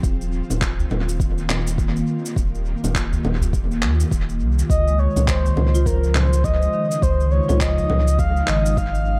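A breathy, flute-like synth lead stands out, entering at 4.7 seconds to sing between Bb4 and F5 with gentle vibrato, subtle chorus and analog delay. This short organic downtempo passage, cut from a longer piece, moves at 103 BPM in 4/4 with a 60% swing on the sixteenths, and its mood is warm and hypnotic. Underneath, an ethereal, airy pad holds sustained chords from Eb69 to Dbmaj9, its detuned unison softened by ensemble chorus and built-in reverb and pulsing with sidechain pumping alongside a round, sine-like sub bass. An overdriven, deep electronic kick and a layered kit of electronic shaker, congas and handclaps, the latter thrown into dub echo, drive the groove, while a close, dry udu sits in the background. A woody marimba with rosewood bars joins at 4.9 seconds with vintage, band-limited arpeggios carried by analog delay, all set in an echo-heavy mix with light reverb.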